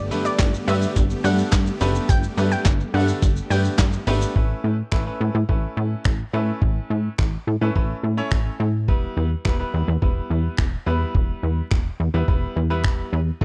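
A straight 4/4 groove at 106 BPM drives this carefree, euphoric dance-pop excerpt, carried by a gritty, sampler-style drum kit with a thumpy kick, medium-tuned snare, hi-hat, shaker, finger snaps and handclaps, placed up front with a tape-warm, large-room character. A punchy, funky analog bass with a plucky, wave-folded tone pumps against the sidechain beneath a bright, polished grand piano that also breathes with that pumping. The opening drop, which lasts until 4.4 seconds, is lifted by huge, lush supersaw chords held very quietly in the background and a round, detuned analog pluck melody with chorus and delay that sounds only until 3.6 seconds. A distant, very quiet group handclap adds a human, crisp layer from the large room. The harmony moves from Gadd9 to Aadd9 at 4.4 seconds and settles on Em, all heard through a worn, warbling cassette-tape ambience with drifting pitch.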